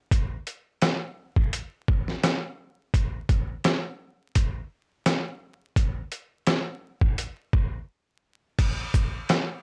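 A compressed, pitched-down trip hop drum kit sits up front in this tough, gritty hip hop fragment, its thumpy kick and medium-tuned snare joined by hi-hat, rim click, shaker and crash cymbal in a lightly swung 4/4 feel. A brief break arrives at 7.9 seconds before a short closing passage, and the drums stop at 9.5 seconds. Light reverb and a layer of vinyl crackle lend the sampled sound a dusty, worn character.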